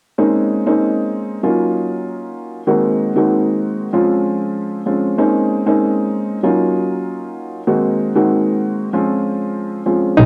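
Tough and moody, this boom-bap hip-hop excerpt swings as a dark, woody upright piano with a mellow, boxy tone carries the accompaniment through a looping cycle of minor-eleventh, minor-ninth, dominant-ninth and major-seventh chords, its sound dulled by cassette tape and filtering in a small room. Only at 10.2 s do a fingerpicked classical nylon-string guitar and a rich, focused bowed double bass with vibrato appear up front, the bass roughened by transformer saturation, as the passage is cut off from the longer piece.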